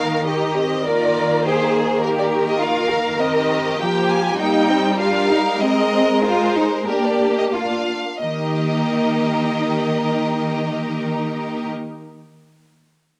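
Quick, lively classical-period movement in Eb major, played with rubato, where an up-front violin section carries a smooth-topped melody over a lush second violin line, soft-attacked expressive violas and a focused cello bass, all bowed with vibrato under light reverb and close, detailed miking, the pace slowing from 2.0 to 8.2 seconds before a short new section arrives in this brief cut.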